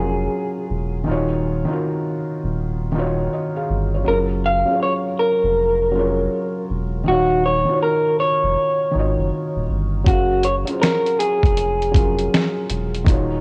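Cosy and nostalgic, this lo-fi hip hop piece moves at 80 BPM in F# major with a swung sixteenth-note feel, its chords alternating between F#maj9 and D#m9. A slightly broken-up electric guitar through a small old amp carries the melody with tape echo until 12.7 seconds, over a felt-muted upright piano whose dark, mellow tone comes with audible action noise and cassette tape colouring, and a deep, round dub sub bass. At 10.1 seconds a gritty, pitched-down boom bap drum kit joins up front with a thumpy kick, hi-hat and snare, all within a light reverb and the character of a home cassette recording.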